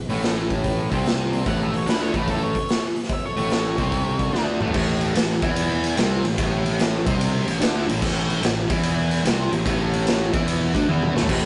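Swung eighths at 147 BPM in 4/4 drive this gritty, swaggering blues rock and southern rock excerpt, built on a cranked, double-tracked stack guitar riff, a growly fuzz bass up front and a raw garage kit with a punchy kick and a saturated, pumping stone-room sound. Between 1.5 and 4.4 seconds a dark octave-fuzz lead carries the melody over a very quiet, smooth overdriven second guitar line, and a drum fill leads into the A5 chord at 4.7 seconds. The rough rehearsal-room recording carries light reverb and warm saturation.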